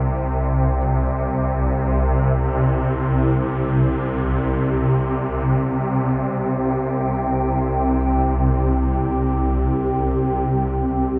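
A swarming, detuned drone sits up front from the start, low and tense in a cavernous cathedral reverb, while a dark, inharmonic synth bell traces eerie arpeggios, barely audible under chorus and tremolo until it drops out at 10.5 seconds. At 1.8 seconds a granular cloud pad enters with blurred, mellow sustained chords that drift above the drone, deepening the unsettling, free-time ambient mood of this brief fragment cut from a longer piece.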